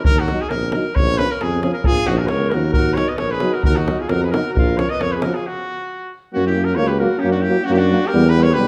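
Restless and virtuosic, this excerpt from a longer Balkan brass band piece moves at 134 BPM in 2/4 with a swung sixteenth-note feel, centered on E-flat minor. A clear, distant trumpet carries the melody from the start, while a deep, close davul drives the percussion and a tuba with light vibrato anchors the bass. Soon after, a mellow, roomy euphonium and a trombone with a smooth top settle in the background as accompaniment, and at 1.9 seconds an alto saxophone with warm vibrato adds a second line. The harmony shifts between E-flat minor and B-flat minor until the davul drops out and the band halts at 5.4 seconds, then resumes at 6.3 seconds on F-sharp before turning to E minor near the close. Every horn is played in a classical style, and a moderate recital hall reverb lends the ensemble a sense of space.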